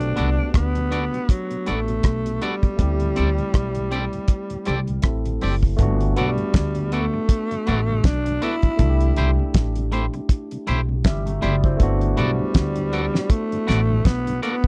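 Romantic and sweet, this lovers rock reggae passage sways in 4/4 with a gentle sixteenth-note swing. A breathy, raspy alto saxophone carries the melody up front with vibrato and a touch of tape echo, over a barky tine electric piano that is lightly overdriven through a combo amp and also echoed. A mellow tonewheel organ with key click and a slow rotary speaker sits very quiet underneath, while a woody, thumpy pizzicato upright bass with transformer saturation anchors the low end. A prominent cloth-damped drum kit brings a fat snare, tight kick, rim click and hi-hat, and a clean, twangy electric guitar plays fingered stabs. From 11.0 to 12.0 seconds, an envelope-filtered electric guitar adds scooped, compressed arpeggios in the background, and the dry, close 1970s-style studio sound keeps the whole band intimate.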